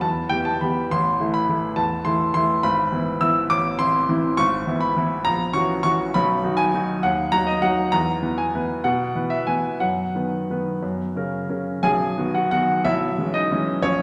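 Classical piano waltz in 3/4, sparkling and playful, moving at a flexible rubato pace somewhere between 169 and 216 BPM. A solo baby grand carries the whole 14-second passage, its tone present, polished and up front, ranging from G#1 in the bass to E6 at the top. The harmony opens in a minor colour around E minor and A minor before turning toward B major from 4.4 s, passing through chords such as F#7/A#, D#m and B/F#. At 11.8 s a new section begins on B, reaching C#m7/B as the fragment breaks off from the longer piece. The instrument is heard from further back in the room, wrapped in a wet scoring-stage reverb with a 1.8-second tail that lends the waltz an airy, spacious glow.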